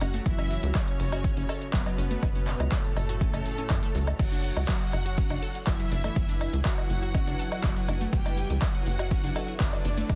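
A dense, heavily limited and fairly dry mix carries this melancholic, cinematic melodic techno excerpt at 122 BPM in 4/4, moving from F#m7 to Emadd9/F# at 4.2 seconds. A smooth, detuned supersaw melody with tape echo and a dark, expressive violin section bowing with vibrato and portamento under delay sit over a tight, driving sequencer bass of sawtooth and square wave with ring modulation, all pumping to the sidechain. A lush unison pluck arpeggio with delay and a cloudy, evolving granular pad with built-in reverb sit in the background, while an overdriven deep house kit of metallic hats, handclaps, ride, crash and woodblock is joined at 0.3 seconds by a punchy, overdriven electronic kick up front.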